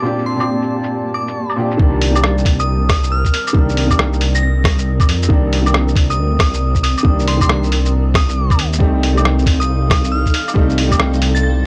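A deep, rumbling detuned saw bass with tube saturation and sidechain pumping enters up front at 1.8 s alongside a muffled, thumpy electronic kick, driving this rainy, wistful future garage excerpt at 137 BPM with a swung 16th feel in C dorian, where a crystalline FM synth bell with 12-bit sampler grit and tape echo carries the melody over a soft, felt-muted upright piano with audible action noise and analog delay, a cloudy, evolving granular pad in the background, a pitched-down, tape-warm lo-fi kit of claves, hi-hat, rim click and shaker, and a calm texture of drifting glass overtones that ends at 1.8 s, all on a gritty cassette recording.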